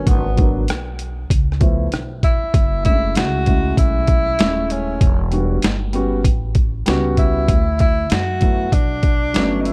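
Gritty, pitched-down boom bap drums sit up front with a thumpy kick and high-tuned snare in this smoky, cool jazz-hop piece at 97 BPM in F# minor with swung sixteenths, while a distant tenor saxophone with subtone, vibrato and analog delay carries the melody over a vintage grand piano with audible action noise and a woody pizzicato upright bass, the whole mix set in a small, lightly reverberant room.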